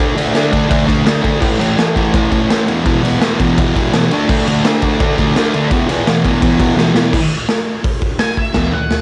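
A straight, driving 4/4 at 168 BPM powers this swaggering, rowdy garage rock fragment, cut from a longer piece and recorded at home on cassette in a small room, as an up-front raw drum kit with punchy kick, medium-tuned snare, hi-hat, ride, crash and toms pounds away in a bright, pumping stone-room sound that is gritty and saturated with a rolled-off top. A thick, double-tracked fuzz guitar, distorted and up front, picks a riff through D5, A5 and E5 chords until the harmony drops out at 7.1 seconds, just after a drum fill. A dark octave-fuzz lead guitar slips in at 8.2 seconds for a brief high melody as the clip closes.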